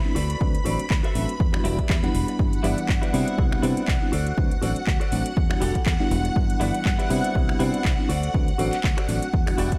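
Funky and sunny, this filtered disco house excerpt cycles through D7, Em9, G6 and Cmaj9 as a reedy electric piano with phaser and a bright, lush sawtooth string machine with ensemble chorus hold the harmony, while a clean, compressed electric guitar picks a chorused riff and adds a fill at 9.3 s, a foam-muted fingered bass sits underneath, and overdriven house drums with metallic hats, finger snaps and handclaps ride on a punchy, up-front electronic kick, with sidechain pumping on the piano, strings, guitar, bass and hats under light digital reverb.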